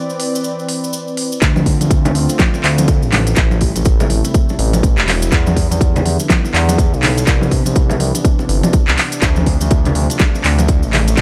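Hypnotic and earthy, this afro house excerpt moves at 123 BPM in D dorian with a swung 16th feel, opening on a detuned sawtooth pad with chorus and sidechain pumping, joined by a grainy, bright cabasa and an electronic afro-pop kit with tape-warm smooth hats and handclaps. At 1.4 s the drop arrives, bringing a punchy, layered kick up front, a saturated sawtooth-and-square synth bass with tube saturation, sidechain pumping and a moving notch, and band-limited vintage congas set in the background, over chords moving through Dm7, Am7, Em7 and Cmaj9. The sound is dry and gritty, with the character of hardware and transformer saturation.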